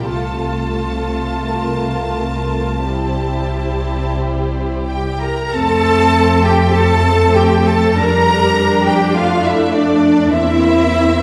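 Heard from further back in a reverberant scoring stage, this tender, slow romantic passage for string orchestra in F major drifts with rubato at 42-52 BPM: a clear, focused violin section carries the melody over a second violin line with a smooth top, a distant, even viola accompaniment, an expressive, soft-attacked cello section and an up-front double bass section, each bowing with vibrato as the harmony moves from F/C to C7/E across its 11.2 seconds.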